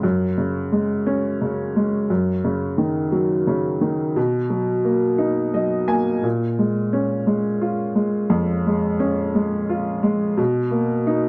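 A clear, woody upright piano opens alone and up front, playing a melancholic, reflective folk passage in a slow 6/8 at 58 beats per minute, its open tone carrying the harmony from Gbsus2 through Ebm7/Gb to Bmaj7. Around 6.2 seconds the harmony turns to Bbm7 before settling back on Bmaj7 at 10.4 seconds, the piano ranging from F2 to Ab5. The dry, close 1970s-style studio sound carries a touch of studio reverb on this brief fragment cut from a longer piece.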